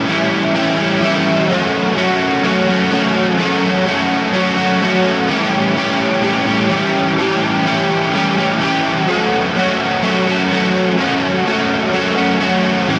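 A dark, overdriven electric guitar, picked, double-tracked, compressed and placed up front with analog chorus, plays alone across this wistful, dreamy 13-second rock excerpt at 126 BPM in a straight 4/4. It moves between A7 and F#m, ranging from A2 to G4, and rings out in a wet concert hall reverb with a 2.0-second decay.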